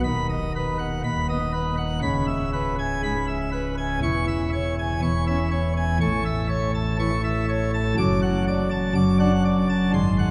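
Jubilant and brilliant, this straight-feel classical organ toccata at 121 BPM in 4/4 gives the solo pipe organ a full plenum with mixtures and baroque voicing, spanning C#1 to D6 with audible chiff and placed up front, while a wet church reverb of 3.4 s sounds from further back in the room as the harmony moves from B/D# through C#m7, C#m/E and A to D/F# across a 10.3-second passage cut from a longer piece.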